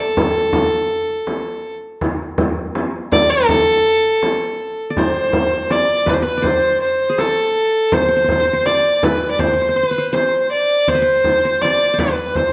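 Soulful and melancholic, this excerpt of an Arabic maqam ensemble at 81 BPM in straight 4/4, tuned to A4 = 441 Hz, features a single nasal, earthy bowed violin carrying the melody with light vibrato up front over a deep, large frame drum, while a bright-edged, triple-strung qanun played with fingerpicks joins in the background at 4.9 s as a second line, the ensemble sitting in a moderate recital hall reverb.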